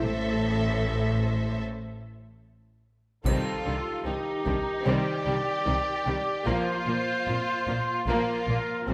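Cinematic, epic orchestral film score, dramatic and relentless, cut from a longer piece: lush bowed violins with vibrato carry the melody over a second violin line in the background, joined by rich violas, a dark, distant French horn section holding sustained chords, and a low foundation of intense, clear double basses and smooth cellos. At 3.3 seconds the music moves into a new section as a taiko ensemble with heavy sticks and a faint triangle join until 4.8 seconds, while tight, up-front trumpets add stabs from 3.2 seconds onward. A moderate scoring-stage reverb surrounds the orchestra.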